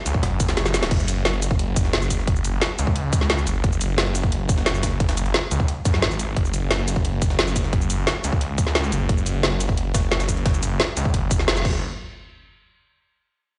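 This is dark technical drum and bass at 176 BPM in 4/4, a futuristic, dark excerpt cut from a longer piece that opens straight into a drop. A snarling, growling sawtooth bass in unison and detuned, ranging from F#1 to F#2, sits up front with distortion, overdrive and sidechain pumping, its sustained, fast-attack tone bright with a moving notch. Underneath, a tight electronic kick anchors a layered drum kit of woody snare, metallic hats, shaker and crash cymbal, both re-recorded in a small room and placed up front, with a drum fill at 0.6 seconds. Far back, a very quiet jungle sampler-style kit adds a gritty, pitched-up layer of hi-hat and medium-tuned snare, re-recorded in a large room. A band accent lands at 11.5 seconds just before the parts drop out around 11.8 seconds, and the whole mix carries the sound of a big sound system in a bare room, with large studio reverb and a dulled top end.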